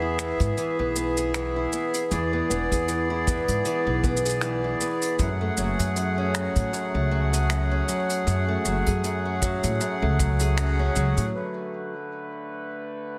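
A boxy, old ladder-braced acoustic guitar picks delayed arpeggios with finger squeak up front in this intimate, autumnal folktronica excerpt at 78 BPM with a light swing, alongside a woody pizzicato upright bass with tube saturation, a reedy, dark accordion holding slow-beating sustained chords through a low-pass filter, distant, roomy brushes with finger snaps, hi-hat and shaker, and a punchy kick, set in small room ambience with light reverb, before a band accent at 10.6 seconds and a filter sweep on the accordion from 11.3 seconds as it lingers to 13.2 seconds.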